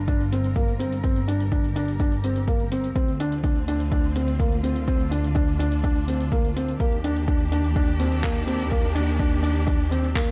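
A steady, straight pulse drives this hypnotic, cinematic piece of piano and strings electronica, built on a deep, overdriven electronic kick that sits up front, with handclaps and hi-hat from an overdriven deep house kit layered around it, both re-recorded in a small room. Beneath them, a dark bowed double bass section holds the low end with vibrato, portamento and a smooth top, its tone thickened by tube saturation and breathing with sidechain pumping. A soft, felt-muted upright piano plays an intimate, mellow riff close to the listener, its audible action noise adding texture and a tape echo trailing each phrase. Behind it all, a lush, distant string section sustains chords with expressive vibrato and portamento, fading in across the full 10.3 seconds while the same sidechain pumping gives it a gentle pulse. The harmony moves from Gm7 to Dm7 and then Ebmaj7 under light reverb, in a passage cut from a longer piece.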